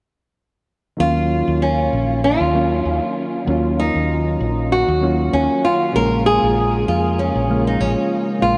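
A relaxed 4/4 groove at 97 BPM carries a gentle swing on the sixteenths, setting the easy pace of this sunset chillout passage in Eb minor, tuned slightly low to A4 = 438 Hz. The mood is warm and wistful, and all three parts play together from 1.0 to 8.6 seconds in this short cut from a longer piece. A fingerpicked nylon-string guitar sits up front with the melody, its fresh strings giving a full-bodied, deep classical tone, trailed by analog delay. Beneath it, soft electric-piano-like synth keys supply round, gentle chords with a fast attack that decays away, shimmering with chorus and delay and shaded by a filter sweep. A woody fretless electric bass anchors the low end with a dark, hollow-body roundness. The harmony moves from Ebm9 to Bbm7 at 6.0 seconds, and a huge ambient reverb with an 8.0-second tail soaks the whole mix in a dreamy haze.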